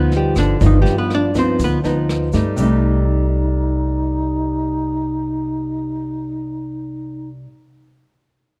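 This intimate, smooth bossa nova fragment opens with a clean, compressed hollow-body electric guitar playing an up-front solo melody over a G7b13 chord. Beneath it, a small-sounding, fingerpicked nylon-string guitar and a woody, growly pizzicato upright bass keep the accompaniment going in a straight 4/4 feel. A polished, airy brushed kit with a medium-tuned snare, rim clicks and a boomy kick, along with a grainy, bright egg shaker tucked in the background, adds light support near the start before falling away. The lead guitar drops out at 1.8 seconds, and at 2.6 seconds a pure, mellow alto flute with vibrato and a soft attack enters on Eb4 as the harmony moves to Cm6. Its hollow, distant tone floats over the nylon guitar and bass in a dark, warm mix with light reverb.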